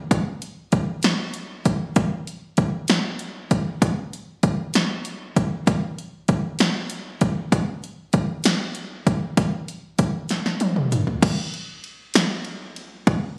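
A slow, straight-feel 6/8 pulse underpins this dramatic, aching pop fragment, cut from a longer piece. The only part is an analog drum machine, up front from 0.1 s to 13.2 s, laying out kick, snare, hi-hat, ride, crash and toms. Its kick and snare hit with a punchy, overdriven edge that gives the electronic kit a gritty bite. A drum fill at 10.3 s carries the pattern into a new section at 11.2 s. The sound is phone-captured in the room, wrapped in a moderate plate reverb with a long tail.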